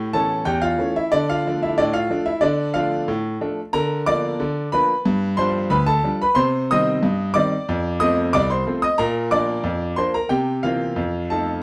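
A dark studio sound with moderate reverb frames this playful, cheerful fragment of a longer ragtime piano piece at 91 BPM in a straight 2/4, where a clear, boxy grand piano with short sustain sits up front playing solo across a range from C2 to Eb6, moving from A7 and Dm into Bb major at 3.7 seconds and through chords such as G7, Cm and F7 before ending on C7 and F7 at 11.6 seconds.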